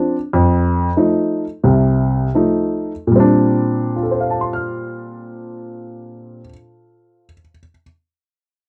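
A dark, mellow baby grand piano plays a relaxed, playful solo jazz passage in Bb major, close and up front, with audible action noise and a short, natural sustain across a range from C2 to F6. The 4/4 pulse swings loosely with rubato between 73 and 99 BPM, slowing over the first 3.1 seconds as an F7 chord gives way to a Bb69 at 3.1 seconds. The dry, intimate 1970s-style studio sound carries a light touch of reverb.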